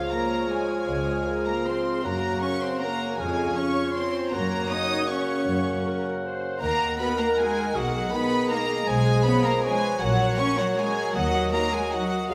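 This is a classical orchestral ballroom waltz in 3/4, sweeping and elegant, with uneven, rubato beats that let the phrases breathe. It is a passage cut from a longer piece. A close violin section carries the melody, bowed sul tasto with a soft attack and a pure, floating sound. Beneath it, airy flutes, a dark and distant clarinet, a smooth cor anglais and a second, background violin line weave secondary voices. A lush, woody viola section and a mellow, roomy bassoon fill in the accompaniment, while a tight French horn section holds sustained chords until 12.1 seconds. The bass is anchored by a rich cello section and a distant double bass section, and a moderate recital hall reverb gives the ensemble a gracious sense of space as the harmony moves from D-flat through G-flat to a closing D-sharp minor.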